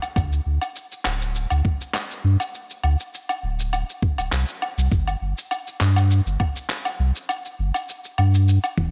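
Earthy and meditative, this organic downtempo excerpt at 101 BPM in 4/4, tuned to A4 = 436 Hz, opens on a gritty, tape-warm soul drum kit of handclaps, shaker, toms and woodblock in studio reverb, joined at 0.2 s by a thumpy, compressed electronic kick up front and a deep, round sine sub bass ranging from D1 to G2 that sustains mellowly under sidechain pumping, all set in a light reverb.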